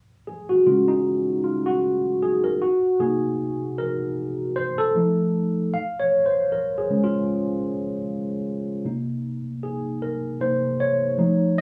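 Smooth and introspective, this short R&B passage, cut from a longer piece, drifts along at 77 BPM in 4/4 with a gentle 16th-note swing. A lone tine electric piano carries the whole passage, entering at 0.3 seconds and playing through to 11.6 seconds across a span from C3 to F5. Its tone is worn and slightly out of tune yet clean, heard through a combo amp and placed up front, with a lush chorus that lends it a shimmering bloom. The harmony moves from Dbadd11 through Cm7b5 and F7 to Dbmaj7, settling on Cm7 near the close. A wet, small-room studio ambience with a short tail wraps the piano in an intimate, reflective space.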